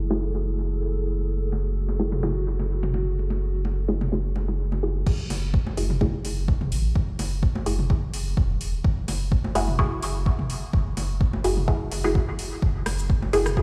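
Dub techno at 127 BPM in F# minor with a light swing, deep and hazy, cut from a longer piece and resting on an F#m9 chord. A dark, detuned analog pad and muted, chorused chord stabs with dub echo open under a filter sweep over a round, soft sub bass, with overdriven electronic bongos and toms arriving at 1.5 s and the pad dropping out at 5.0 s. At 5.1 s a punchy, up-front analog kick drops in alongside a low-pass filtered deep house kit of metallic hats, cabasa, crash and rim click, while the stabs, bass and percussion pump to the sidechain as if played on a big sound system in a bare room.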